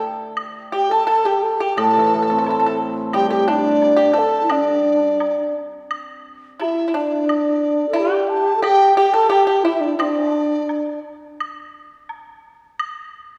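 A rubato 2/4 pulse around 87 BPM carries this festive, pastoral Chinese chamber piece in D shang mode, heard as a cut from a longer work. Up front, a mellow, hollow large dizi with a buzzing membrane and straight tone leads the melody, joined at 0.7 s by a breathy, reedy low xiao with vibrato and a percussive, fingerpicked pipa as second lines. A shimmering, ringing hammered dulcimer accompanies only until 5.2 s, while a dark, close woodblock ticks on to 12.9 s, all set in the lush reverb of a concert hall.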